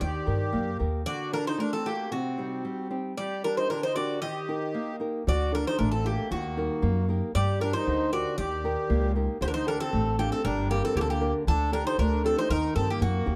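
Brooding and moody, this excerpt of Greek folk in D phrygian dominant moves in 2/4 at 116 BPM with a straight feel, gradually speeding up over its dark-toned mix with light reverb. The bright, metallic double strings of the picked bouzouki carry the melody up front, some of them octave-doubled, while a reedy, close-miked accordion with slow beating adds a full, dry second line and a small, fingerpicked nylon-string guitar supplies the accompaniment. A woody, thumpy upright bass on gut strings is played pizzicato and sits up front; it sounds briefly at the start, drops out at 1.0 seconds, and returns at 5.3 seconds to anchor the chords through to the end.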